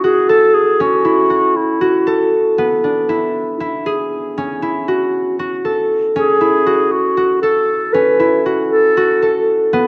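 The music moves in an uneven 7/8 meter with a straight feel, giving this contemporary chamber fragment a restless, urgent pulse. A concert harp carries the whole passage with fingerpicked arpeggios that sit up front, their acoustic tone warm and ringing. A mellow solo clarinet with a soft attack states the classical-style melody at the start, falls silent at 2.3 seconds, and returns at 6.2 seconds. The harmony travels from F#m to E and then to C#madd11. A moderate concert hall reverb surrounds the players, while a worn, warbling old cassette tape quality lends the sound a warbly pitch drift.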